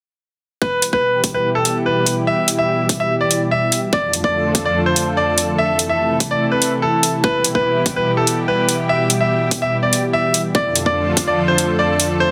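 Heavy wobble dubstep in a menacing, aggressive half-time groove, this excerpt sets a brilliant, polished concert grand piano melody with digital delay over a thick, detuned sawtooth unison pad that pumps with sidechain, carries chorus and undergoes a filter sweep, while a punchy, tape-warm electronic kick and metallic, up-front hi-hats drive it in light reverb under a dense, heavily limited master.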